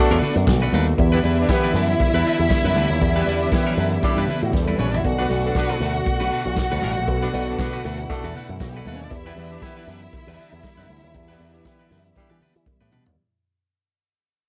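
A punchy, up-front picked electric bass run through an envelope filter anchors this driving, glamorous disco excerpt at 118 BPM in 4/4, with a light 16th-note swing and a tuning just sharp of standard. A vintage drum kit with a fat snare, punchy kick and rolled-off top supplies handclaps, hi-hat, kick, snare and toms, with drum fills at 4.5 seconds and 12.7 seconds. An up-front horn section with light vibrato and octave doubling punches out loose pop-style stabs, while a violin section plays an expressive, bowed second line and a lush, very quiet string section holds smooth sustained chords beneath. A twangy, compressed clean electric guitar and a mellow tine electric piano in the background fill out the accompaniment, with ringing medium-tuned congas and a metallic cowbell tucked in close and dry at very low level. The harmony alternates between Bm7 and Em7, and the whole passage, heard as a cassette home recording with light reverb and tape colour on several parts, fades out across its length.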